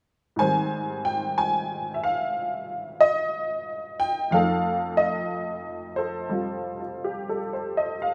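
A swing at 61 BPM in 4/4, with the eighth notes swung, sets a playful, swinging mood for this short solo jazz excerpt in Ab major, tuned slightly sharp to A4 = 445 Hz. A lone honky-tonk upright piano, detuned and jangly with a bright vintage character, sits up front and plays from 0.4 to 8.1 seconds across a range from F2 to Ab5, moving from Abmaj7 to F7 at 4.3 seconds. Moderate studio reverb gives the piano a modest sense of room.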